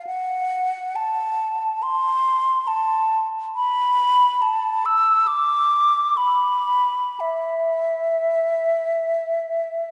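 This classical fragment is a free, expressive piece for unaccompanied concert flute, unfolding in free time with a yearning, mournful mood. The silver flute plays alone for the full 9.9 seconds, moving between E5 and E6 with a mellow, hollow tone and an airy edge. Its notes are tongued and shaded with vibrato, and the instrument sits up front. A wet church reverb with a 3.0-second decay surrounds the line, and the listener seems placed further back in the room. The passage is cut from a longer piece.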